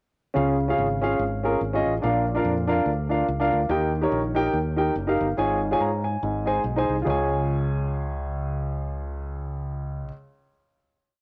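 Uptempo gospel at 143 BPM with a swung feel in Db lydian, reverent and hopeful, where a woody, intimate upright piano with audible action noise and cassette-tape colour plays rhythmic drop-2 chords and short fills over a punchy fingered electric bass that walks and runs with chromatic approach notes, all in a spring-reverb home cassette recording that moves through a breakdown before settling on a final Db chord at 7.1 seconds.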